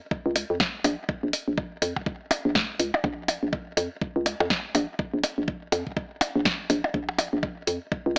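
Minimal techno at 123 BPM in 4/4, with a swung sixteenth-note feel in B-flat minor, this short cut from a longer piece sounds sparse and clinical. A layered electronic kick drum with a knocking tone, re-recorded in a small room, starts at 0.1 seconds alongside up-front percussion blips that carry a tape-warm character and a digital delay. At 0.3 seconds a hollow, bouncy FM bass arrives, its fast attack and decaying notes sitting between F1 and F2 with sidechain pumping. A punchy analog drum machine joins at 0.4 seconds with hi-hat and a punchy, up-front snare. The whole passage stays in one section, framed by a digital ambience and a small-speaker sound.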